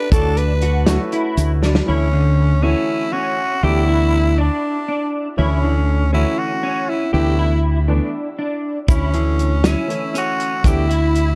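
Progressive instrumental band music in 7/8 with a bright, intricate mood, this excerpt puts a raspy, gritty tenor saxophone up front on the melody with vibrato, treated with analog delay and plate reverb, while an electric guitar at the edge of break-up plays dark arpeggios through chorus, delay and plate reverb, and a polished grand piano adds accompaniment over a round, punchy fingered bass holding D. The soul drum kit, with its tight kick and rolled-off top, plays from 0.1 to 1.9 seconds with a fill at 1.6, then drops out and returns at 8.9 seconds, joined each time by a grainy tube shaker in the background. The harmony moves from Dmaj7 through rootless G6/D and A/D chords over a steady D in the bass.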